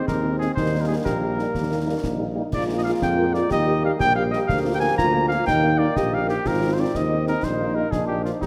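Spirited and proud, this brief 8.5-second cut from a longer military-style march for wind band moves at 122 BPM in a straight 6/8 in Eb major, set in a wet, reverberant scoring-stage space. A mellow, up-front cornet carries the melody over a smooth-topped euphonium second line and a mellow tuba bass with light vibrato, while a clear, tight trombone section holds sustained chords in the background and a dark, distant French horn section adds very quiet accompaniment. Concert snare, bass drum and dark-toned clash cymbals sound close and dry, driving the phrase from its opening Ab/Eb through Bb/D and Ab to a closing Eb/Bb and Bb.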